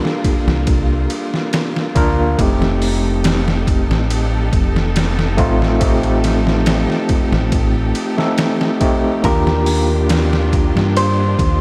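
Trip hop at 70 BPM, hypnotic and brooding, cut from a longer piece: a barky, overdriven tine electric piano with fast tremolo, harmonic tremolo and tape echo comps over Gm7 and F9 while a rich bowed string section holds sustained chords with 12-bit sampler grit, a pitched-down, thumpy sampler-style kit with overdrive and studio reverb enters at 0.1 s, a round, punchy dub bass with tube saturation joins at 0.5 s, and a dark, hollow-body guitar with tape echo adds a brief melody at 9.2 s as the harmony moves to Ebmaj9, all under light reverb and vinyl crackle.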